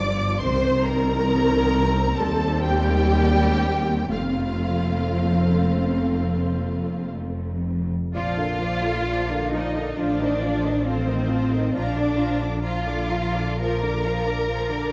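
An up-front, lush double bass section anchors this tender, slow romantic movement for string orchestra in Bb major, alongside a close, rich cello section on the bass, a smooth-topped viola accompaniment, an expressive second violin line and a focused, distant violin melody reaching up to D6, all bowed with vibrato and shaped by rubato at 57-71 BPM, as the harmony moves from Cm through F and settles on Bb at 8.1 seconds in a dark, warm production with moderate scoring-stage reverb, cut from a longer piece.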